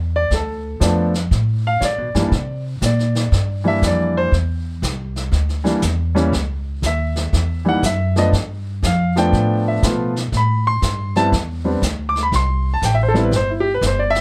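A relaxed 120 BPM swing in 4/4 carries this playful jazz piano trio in G mixolydian, where a warm baby grand piano, up front and natural, takes the melody as a solo from 0.2 seconds over a woody pizzicato upright bass on steel strings and a vintage brush drum kit with a punchy kick and medium-tuned snare, all caught by close, detailed microphones in a dry sound as the chords move from G7sus2 through C9, C#m and G9 to Am7 in this short cut from a longer piece.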